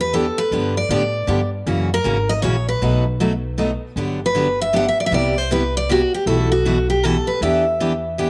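A picked steel-string acoustic guitar carries the melody from the opening moment, bright and up front with audible finger squeak, over a woody, thumpy pizzicato upright bass on gut strings, and a second full-bodied dreadnought guitar with fresh strings joins in accompaniment at 0.1 seconds. This brief section of acoustic string swing in the jazz manouche style moves at 156 BPM in a swinging 3/4 in E minor, with a bittersweet mood. The chords pass from Em7 through G7, F#7, B7, Gmaj7, Cmaj7 and B7sus4 before settling back on Em7, all in a studio ambience touched with light reverb.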